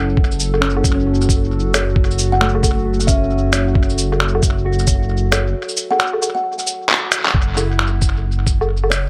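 Rainy and wistful, this future garage excerpt at 134 BPM in F# minor swings its 16ths over a rumbling, detuned saw bass and a thumpy, muffled kick, while a clean, fingered electric guitar with analog delay and a moody analog pad with chorus and phaser pump to the sidechain along with the bass, up-front pitched-down shaker, cabasa, woodblock, finger snaps and handclaps carry tape echo, a woody, ringing kalimba with 12-bit sampler grit enters at 1.7 seconds, and a drum fill at 6.9 seconds leads into a brief closing section in an echo-heavy mix.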